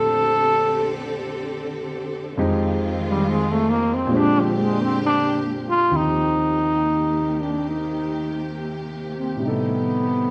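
A buzzy, breathy muted trombone carries the melody up front in a tender, intimate jazz ballad at 69 BPM with a gentle swing, taking a solo through 5.9 seconds over a deep-bassed concert grand piano and lush, vibrato-rich bowed strings, as Bbmaj13 and Fm7 harmonies give way to Eb6, all within a dark production and a spacious large-studio reverb in this short excerpt cut from a longer piece.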